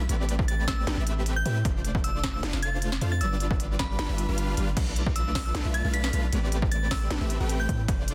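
A deep, mellow 808-style bass sits up front from the first moment, its long sine tone saturated and pumping against the sidechain, anchoring this emotional, lush future bass passage in A minor at 154 BPM with a half-time feel. A huge, thick supersaw riff built from detuned unison sawtooth layers with a sub octave fills the middle, heavily compressed, touched by vibrato, and echoed by digital delay as it breathes with the same pumping motion. Above it, a glassy, crystalline FM bell carries the melody high in the register, its decaying notes shimmering through chorus and delay. The punchy, overdriven electronic kick hits up front, while a trap kit adds a sharp snare, crisp hi-hats, ride and crash. The chords move from Am11 through F6 and G7 to Bm7b5 before returning to Am11, with the kick dropping out from 4.4 to 4.8 seconds ahead of the second drop, all held in a dry, dense, heavily limited modern master.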